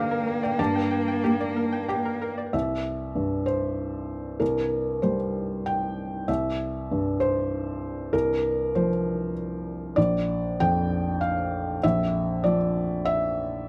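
This melancholic, longing neoclassical passage for piano and strings opens with three parts sounding together in a rubato 3/4. A felt-muted upright piano sits up front, soft, mellow and intimate, carrying the accompaniment across a broad register. Beside it, a single bowed cello plays a rich, expressive second line with vibrato, portamento and a gentle attack, but falls away at 2.3 seconds. A bright, twangy resonator pluck with a nasal, string-like edge and a noise layer spins quick-decaying arpeggios through chorus and tape echo until 2.5 seconds. From then on the piano carries the music alone through C7, Fsus2/C and Bb chords until the cut at 13.7 seconds, all set in a light reverb.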